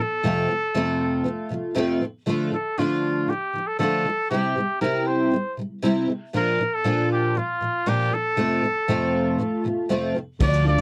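A straight 4/4 pulse drives this reflective, wistful slice of acoustic pop, taken from a longer piece. From the opening, a double-tracked, picked steel-string acoustic guitar sits up front with a bright accompaniment while a trumpet carries the melody in a vintage pop style, its light vibrato and scooped notes adding a gentle ache. The harmony moves through F, Dm, C and Bb before settling back on F. At 10.4 s the band fills out: a woody, thumpy pizzicato upright bass lands prominently, a natural country drum kit adds crash cymbal, punchy kick and shaker in an airy studio room, and a felt-muted upright piano murmurs very quietly with dark, intimate tone and audible action noise. The whole is captured as a dry, close 1970s-style studio recording with little reverb.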